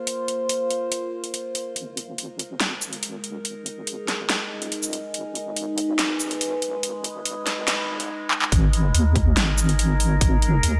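Meditative and heavy, this half-time deep dubstep excerpt in G# minor at 142 BPM opens on a bright, wave-folded sawtooth drone with moving overtones, phaser and chorus, joined by a tape-warm drum kit with a huge snare, metallic hats, handclaps and shaker, before a dark, detuned wobble bass enters at 1.8 seconds and a filter-swept build-up and drum fill give way to a drop at 8.5 seconds, where a punchy electronic kick arrives with small room ambience.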